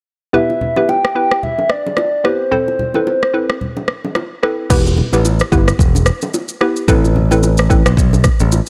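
A swung sixteenth-note groove of small-room congas and bongos and a bouncy, detuned square-wave pluck opens this hypnotic, sultry afrobeats excerpt, with a woody, vibrato-laced clarinet-like synth lead carrying the melody until 3.9 seconds, a tape-warm electronic drum kit with deep kick, rim click, shaker and crash arriving at 1.0 seconds, and a bright, picked electric bass entering up front at 4.7 seconds over Em and Amadd9 chords in a dry, gritty mix.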